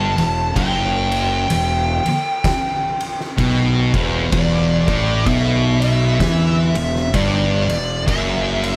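Stoner and doom metal with a heavy, hypnotic mood, this short cut from a longer piece rolls at a slow, swung crawl and rests on a single E minor chord throughout. Two thick fuzz guitars grind out the low riff together, one sitting slightly back in the mix, their picked tone warm and distorted. A fingered electric bass holds down the low end beneath them, its overdriven fuzz bright, growly and punchy. Over the top, a dark, compressed fuzz lead guitar carries the melody through wah, distortion and digital delay. An oversized, low-tuned acoustic drum kit joins at 0.2 seconds with a punchy kick, a fat snare and ride cymbal, its saturated, gritty sound set in a bright stone room, and light reverb gives the whole a touch of space.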